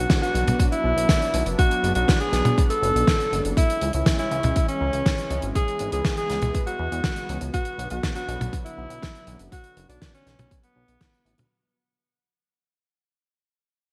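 Italo disco with a melodramatic, bittersweet mood, drawn from a longer piece, where a smooth-topped alto saxophone with light vibrato and delay carries the pop-style solo melody up front. Behind it, a lush, warbling unison pad with chorus sits in the background, while a glossy, chorused synth bass with a plucky filter provides a retro low end. A dry, fat-snared 70s drum kit with gated reverb and a punchy, layered electronic kick drive the straight beat through a bright 1980s-style digital production with vinyl crackle, and the whole track fades out from 3.6 seconds to its end at 11.5 seconds.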